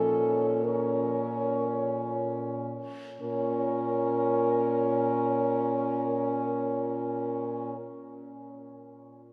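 A mellow French horn carries the melody on a high Db5, its light vibrato and soft attack sounding distant and roomy as it sits very quiet, far back in the blend. This lyrical classical piece for horn quartet is a brief cut from a longer work, in Bb minor at 47 BPM in 3/4 with a rubato feel, and its mood is solemn and yearning. A second horn, also mellow with light vibrato, shapes a second line moving between A4 and Bb4. Two clear horns sit up front: one holds the accompaniment on Db4, and the other anchors the bass on a present Bb2 beneath a Bb minor harmony. All four play together from 0.0 s to 7.8 s, slowing through the opening until a new passage begins at 3.2 s. A wet cathedral reverb with a long 6.9-second decay places the ensemble further back in a vast space.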